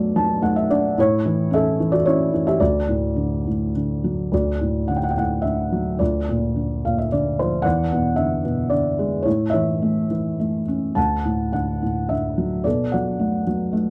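A felt-muted upright piano plays alone through this short, relaxed classical excerpt, its thick-felt tone intimate and dark, with the action noise audible up close in a light reverb. The lyrical solo moves in a rubato 3/4 at around 102-113 BPM in D major, tuned to A4 = 436 Hz, ranging from D2 to A5. Brief piano fills at 0.0 and 6.6 seconds color a progression that starts on Bm7, passes through a Bb/D and an E7, and returns to Bm7.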